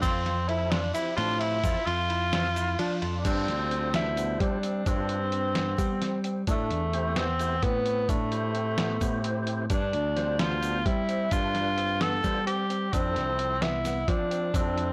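Bright, intricate progressive instrumental in 7/8, cut from a longer piece, where a breathy, whispered tenor saxophone carries the melody up front with plate reverb, soloing over the opening before a short break at 2.8 seconds, while a punchy, saturated electric bass and a muffled, thumpy sampler-style drum kit drive underneath, a barky tine electric piano adds chorused, echoing arpeggios in the background, a lightly overdriven tonewheel organ with fast rotary speaker and key click joins at 0.5 seconds, and a grainy egg shaker sits softly behind, all in a blown-out, overdriven recording.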